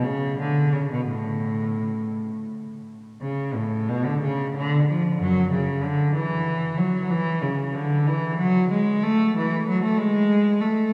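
The recording sits in a cathedral-like space with a long, wet reverb, and the listener seems placed further back in the room. Within that halo, a single bowed cello plays alone from 0.0 to 10.9 s, its rich, focused tone carrying vibrato and staying up front despite a distant sheen. This is a classical, baroque-style suite movement for unaccompanied cello, moving in a lilting 6/8 with a free, rubato feel. The mood is radiant and dance-like, and the line stays in the instrument's low-to-middle register. A new phrase begins at 3.2 s, and the passage is cut from a longer piece.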